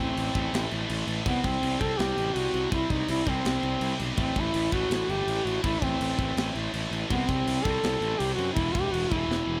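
Set in a half-time feel at 164 BPM in 4/4, this relentless, heavy metal clip is cut from a longer piece and moves from A minor through C5 and back before landing on E5. A mellow duduk carries the folk-style melody up front, its soft attack and scooped notes floating over the weight beneath. Two bright, high-gain guitars pick the riff together, one of them sitting in the background. A fuzz-soaked electric bass growls up front with overdrive, while a tight metal drum kit enters at 0.2 seconds with crash cymbal, kick and a medium-tuned snare, its gritty, saturated sound rolled off at the top. A short drum fill at 9.3 seconds closes the passage, and the whole mix sits in a dry studio room.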